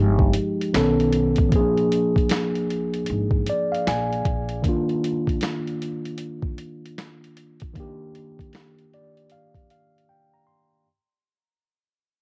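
Lo-fi hip hop with a hazy, nostalgic mood, this short cut from a longer piece rides a swung 4/4 groove and fades out from its opening moment. A tine electric piano carries the accompaniment up front, its clean tone coming through a combo amp and softened by cassette tape as it moves through Fm9, B9 and Bb7 before settling on Ebmaj9 at 4.6 seconds. A woody pizzicato upright bass on steel strings sits low beneath the opening chords and stops at 4.6 seconds. The sampler-style boom bap kit, gritty, compressed and pitched down, brings a thumpy kick, a medium-tuned snare, hi-hat and finger snaps, tape-coloured and placed up front. The drums drop out at 10.1 seconds for a brief break, leaving the electric piano alone to the end, all captured as a dry home recording on cassette.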